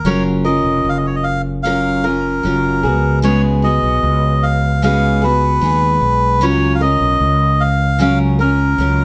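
A straight 4/4 pulse at 76 BPM carries this heartfelt, sunny acoustic pop excerpt in F# major, cut from a longer piece, with all three parts up front and playing together throughout its nine seconds. A reedy, nasal melodica takes the melody over a full-bodied picked steel-string acoustic guitar and a bright, direct fretless electric bass, moving from F#maj7 to C#7sus4 at 2.8 seconds and back to F#maj7 at 6.4 seconds. The band sounds as if it is playing live in one room, framed by a moderate studio reverb.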